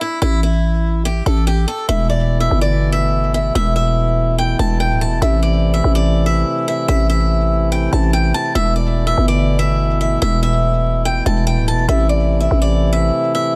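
Menacing and melancholic, this half-time hip hop cut in A minor moves at 144 BPM, opening on a boxy, picked swing-style acoustic guitar melody with finger squeak and digital delay, joined at 0.2 seconds by a growling, buzzy 808-style bass with a fast attack that decays up front. At 1.9 seconds a reedy, breathing pedal harmonium enters with close-miked, dry sustained chords moving between Esus4 and Am. A small room reverb frames the sound, and the recording is cut from a longer piece.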